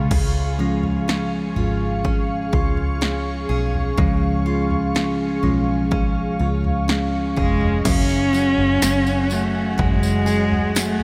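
This heartbroken, longing pop ballad fragment opens at 62 BPM with a bright, bell-like tine electric piano carrying a featured passage over a glassy FM pad with ensemble chorus, a picked steel-string acoustic guitar arpeggiating in the background, a dark, round, foam-muted electric bass, and a punchy, tape-warm electronic drum kit with crash, toms, kick and snare. A bowed cello enters up front at 7.4 s with a focused, smooth-topped tone and vibrato, and at 7.9 s the music settles into F# minor on an F#sus2 chord as a jingly tambourine joins. The whole mix is dreamy and soaked in a huge ambient reverb.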